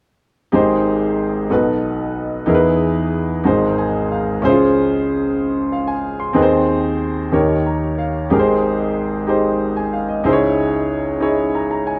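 A clear, open baby grand piano sits up front in a moderate large-studio reverb, captured as if played live in one room. This short gospel excerpt moves in a slow 6/8 at 62 BPM on the dotted quarter, with a straight feel and a hopeful, uplifting mood in Ab major. The solo piano carries the whole passage from 0.5 to 12.0 seconds, ranging from Ab1 up to C6. Its harmony travels from Abmaj7 through B7 and Emaj7 to Ab7, then settles through Dbmaj7, Ab/Eb and Eb7 back to Abmaj7 before closing on Dbmadd9. Short piano fills arrive at 3.4, 7.3 and 11.2 seconds.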